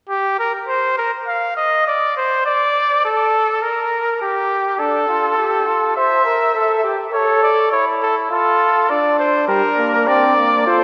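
In a straight 4/4 at 102 BPM, this imitative canzona for brass ensemble unfolds in G minor with a serious, solemn bearing, cut from a longer piece. A clear trumpet with vibrato carries the melody alone from the opening, its classical tone sitting up front. At 4.8 seconds a warm, distant flugelhorn enters with a second line, and the harmony moves through Dm, C, A and Dm/F. A clear trombone joins in accompaniment at 9.5 seconds, arriving on a rootless G minor and sounding roomy beneath the upper voices. The wet church reverb, with a 2.7-second decay, gives the ensemble the resonance of a church or concert hall.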